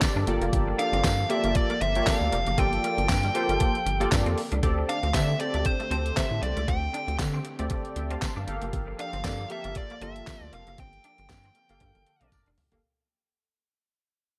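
A punchy polysynth comp, a soft analog pad, a detuned 8-bit drum machine and a jingly tambourine open this excerpt of early-eighties boogie funk, set at 117 BPM in G dorian with a light sixteenth-note swing and a slick, late-night mood. A rubbery square-wave bass arrives almost at once, sitting up front beside the drum machine's thumpy kick, handclaps, hi-hat, snare and toms, which carry a gated reverb and a tape-tinged, sampler-style character. A clean, bright semi-hollow electric guitar riff with ensemble chorus sits in the background. From 0.8 seconds a nasal, overdriven lead guitar with a parked wah carries the melody up front, while the comp's filter pluck and moving notch evolve through its chorus over the smooth, detuned pad. The harmony moves from Gm9 to D7sus4 and back to Gm9, and the music fades out from 4.6 seconds onward, with a band accent, a drum fill and a brief, very quiet flicker from a clear, tight horn section near the close, all wrapped in a digital ambience.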